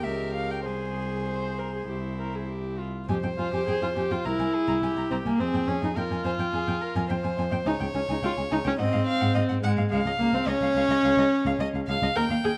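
Close, detailed microphones and a moderate scoring-stage reverb frame this string quartet, with vinyl crackle beneath the sound. The music is a quick, urgent and dramatic classical-period movement, played with a rubato feel and cut from a longer piece. The first violin carries the melody with light vibrato and a gut-string, period-style tone. The second violin sits close and reedy on a second line. The viola, warm with a smooth top, and the rich cello on the bass line are both placed up front. All four players bow together from the start to around 12.5 seconds, and a brief opening phrase gives way at 3.1 seconds to a longer second section that opens on an F minor chord.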